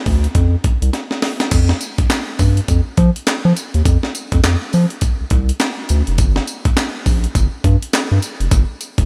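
A light reverb and digital ambience give this short excerpt a punchy sound, with both parts sitting up front. It is a confident piece of new jack swing R&B in 4/4, carried by a shuffling sixteenth-note swing. A sampler-style breakbeat drum kit, compressed and gritty, drives the groove with a thumpy kick, a medium-tuned snare, handclaps, hi-hat, tambourine and crash cymbal. Underneath, a round analog bass with a dark, sine- and triangle-like tone plays from F1 to F3, its notes starting fast and sustaining. Both instruments play from 0.1 seconds, and a drum fill between 0.9 and 1.5 seconds leads into the next section, which runs to the end of the clip.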